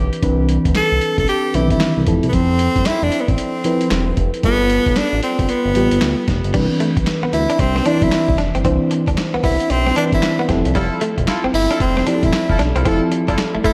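A swung sixteenth-note groove at 114 BPM drives this flirty, bouncy new jack swing excerpt in C major, built on a muffled, pitched-down lo-fi drum kit with a thumpy kick, handclaps and crash, run through overdrive. Beneath it sit a smooth gliding synth bass with portamento and a soft, round FM electric piano thickened by chorus. A clear, punchy tenor saxophone carries the melody up front with vibrato and tape echo from 0.8 seconds, a clean, direct-recorded electric guitar adds a lush-chorused riff at 6.5 seconds, and a mellow, tight horn section slips in with stabs at 10.7 seconds, all in a dreamy mix soaked in plate reverb over Cmaj9, Fmaj7 and G9 chords.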